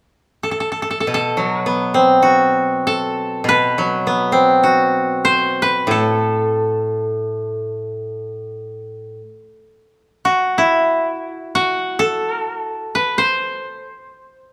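Japanese traditional chamber music in free time, this solitary, meditative excerpt pairs two kotos played with fingerpicks, both dry, woody and up front, in a moderate recital-hall reverb. One koto carries the melody from 0.4 seconds to the close at 14.5 seconds with a warm tone, while a brighter koto supplies lower accompaniment between 1.1 and 9.2 seconds. The passage is cut from a longer piece.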